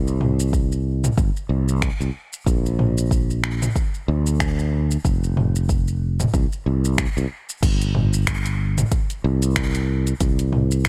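A growly, bright fretless electric bass sits up front from the start, sustaining low notes in this hypnotic, earthy organic downtempo piece at 93 BPM in 4/4, with a 16th-note swing and tuning pitched slightly above standard. A layered deep house kit of finger snaps, hi-hat, shaker, toms and crash cymbal, also up front, joins at 0.1 seconds, and a deep electronic kick follows at 0.5 seconds, both with a tape-warm, small-room character. The dry mix moves into a new section at 7.6 seconds before this fragment of a longer piece cuts off.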